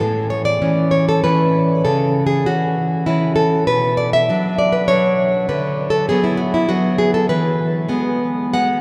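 The recording sits in a vast, echoing space, with a wet cathedral reverb whose tail lingers for about 6.5 seconds around every note. At its center is a solo nylon-string guitar, fingerpicked in a classical manner and placed up front, its fresh strings giving the tone a bright edge. This short excerpt from a longer romantic piece moves in a gentle triple metre with a rubato feel, so the pulse breathes freely rather than keeping strict time. The harmony passes from A through C#madd11 and Bm to Bm/D before settling on E around 7.3 seconds, and the guitar ranges from its low register up to F#5. The mood is warm and tender, a single voice made spacious by the enormous room around it.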